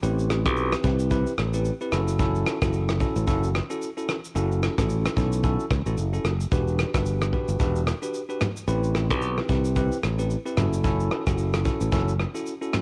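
A swung 16th-note afrobeats groove at 111 BPM in 4/4 drives this mellow, hypnotic excerpt: a soft brush drum kit with a punchy kick, rim click, shaker and toms sits up front in a small room, a bright, growly fingered electric bass plays direct and low until 12.2 seconds, and a bell-like, clean tine electric piano, heard through built-in speakers with cassette tape colouring, accompanies over Am7, F#m7 and Em7, the whole piece captured as a home recording on cassette.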